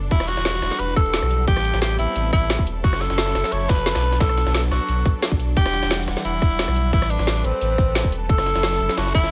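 A breathy, raspy tenor saxophone carries the melody up front from 0.1 seconds, its vintage, pop-style solo voice trailed by dub echo in this melancholic, lush excerpt of liquid drum and bass at 176 BPM in E minor. Beneath it, a clear symphonic string section holds smooth, bowed chords with vibrato, sitting low in the mix and breathing with sidechain pumping as the harmony moves through Em9, Am9, F#m7 and Bm7. A round, sine-like sub bass with a fast attack sustains deep notes up front, anchoring the progression. The drums layer a tight electronic kick with a garage kit of woody snare, rim click and metallic hats, all given studio reverb. In the background, a pitched-up, gritty jungle sampler-style kit adds a high-tuned snare and filtered hats, and a digital ambience surrounds the whole production.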